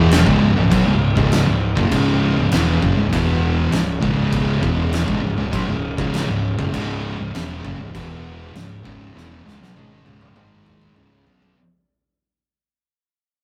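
Stoner and doom metal with an ominous, brooding mood, this rough rehearsal-room fragment sets two thick, distorted fuzz guitars picking a riff in the background over an overdriven, fingered electric bass and an oversized, low-tuned acoustic drum kit with a fat snare, punchy kick, dark cymbals and gritty, pumping room sound placed up front, while a soft, flute-like tonewheel organ with slow rotary speaker joins at 1.9 seconds with sustained chords behind them, a drum fill arrives at 9.1 seconds, and the whole passage sits in moderate reverb under a fade-out that runs its full length.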